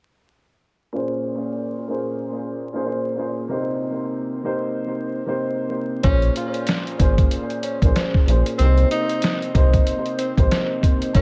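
A swung 94 BPM boom-bap groove in 4/4 drives this gritty, dark hip-hop excerpt from 6.0 s, when a muffled, pitched-down sampler-style kit with a thumpy kick and 12-bit grit joins a deep sine-and-triangle sub bass. Before that, a woody, boxy upright piano plays alone from 0.9 s over Bbm7 and Cm7, shaded by cassette tape, tape echo and a filter sweep. At 6.0 s a breathy tenor saxophone adds a mellow, jazz-style melody with scooped notes and light vibrato, while the mix carries spring reverb, heavy echo and vinyl crackle.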